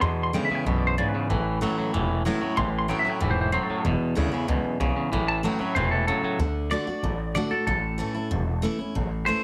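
A straight, driving 4/4 at 188 BPM sets this upbeat, rollicking rock piece in A major, with a woody, thumpy upright bass plucked up front and a full-bodied steel-string acoustic guitar picking accompaniment over chords moving between E7, A and D. A clean, compressed semi-hollow electric guitar carries the melody with tape echo and takes a solo over the opening, while a twangy electric guitar riffs in a low register up front until 6.4 seconds. There, the passage shifts to a new section for its final stretch, all set in light studio reverb.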